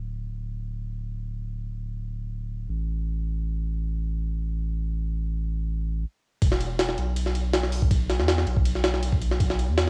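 A dry, cassette-recorded snippet of atmospheric, nostalgic jungle drum and bass opens with a deep, thick, saturated sub bass held up front on its own, briefly halts at 6.0 seconds, then drops at 6.4 seconds into a gritty, compressed, pitched-up sampler-style kit that sounds re-recorded in a large room, with tape-tinged hi-hat, ride cymbal, a thumpy kick and a high-tuned snare.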